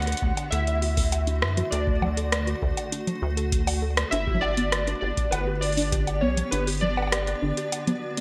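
This wistful, intricate IDM fragment opens at once with a warbling, detuned synth keys melody up front, carried over a blurred granular pad and a dark, nasal pluck playing arpeggios in the background. The keys have a nostalgic, lo-fi character with chorus and digital delay, while the pad drifts in cloudy, evolving chords bathed in its own reverb and lush chorus. Underneath, a rubbery, hollow square-wave bass bounces up front, and an analog drum machine adds bongos, congas, metallic hi-hats and rim clicks through gated reverb. A deep electronic kick enters at 0.2 seconds and drops out at 6.0 seconds, leaving the percussion and synths to carry the final moments, with the bass stopping at 7.5 seconds. The harmony moves from D to G, and the whole piece sits in a moderate hall reverb with a bright, 1980s-style digital sheen.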